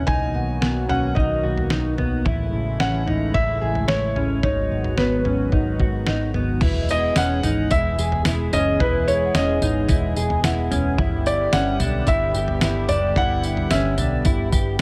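Dream pop at 110 BPM in 4/4, dreamy and blissful, where a soft, felt-muted upright piano with audible action noise carries the melody over a smooth, detuned analog pad, dark clean fingered guitar arpeggios with chorus and delay, a round, foam-muted picked bass and a gritty, compressed sampler-style drum kit with a thumpy kick, fat snare, tambourine, toms and crash, while a bell-like celesta rings delicately in the background from 0.4 seconds and again from 5.0 seconds, all in light reverb as the chords move from Bmaj7 through Amaj7 and G#m7 to Emaj7 at 6.6 seconds and G6 at 11.0 seconds in this excerpt from a longer piece.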